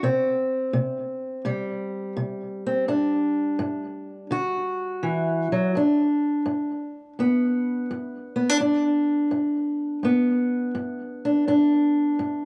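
A lone fingerpicked steel-string acoustic guitar opens this rollicking, swaggering blues fragment, its dark, woody parlour tone carrying the boxy character of old strings and sitting up front with a slapback echo. At 84 BPM in 4/4 with a swung eighth-note feel in G major, it moves from C5 to G5 and D before settling on G as a second section begins at 5.7 seconds. The sound is dry and open-air, recorded outdoors, and the clip ends at 12.4 seconds.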